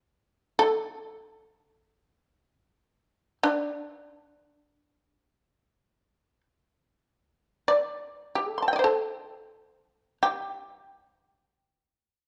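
Japanese traditional chamber music in free time, calm and austere, heard in a short passage cut from a longer piece. A solo shamisen sits up front from 0.6 seconds, its fretless, plectrum-plucked tone percussive and buzzing as it covers a range of D4 to C6 across two statements of the same section, the second beginning at 6.7 seconds. The dark production places the instrument in a moderate recital hall with a reverb time of 1.4 seconds.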